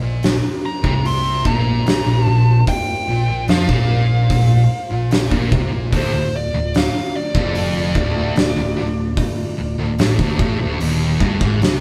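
Hypnotic and sludgy, this stoner and doom metal piece is driven by a pair of thick fuzz guitars grinding out a dark riff in the background, moving from Bb5 to Dm, over a fingered electric bass with amped overdrive. An oversized low-tuned drum kit enters at 0.2 s and sits up front, with a fat snare, punchy kick and hi-hat; its sound is saturated and gritty with a rolled-off top, set in a bright stone room. A distorted fuzz lead guitar carries the melody from 0.7 s, while a very quiet, mellow, organ-like string ensemble with vintage chorus holds sustained chords beneath the band, which plays live together in one room with moderate reverb.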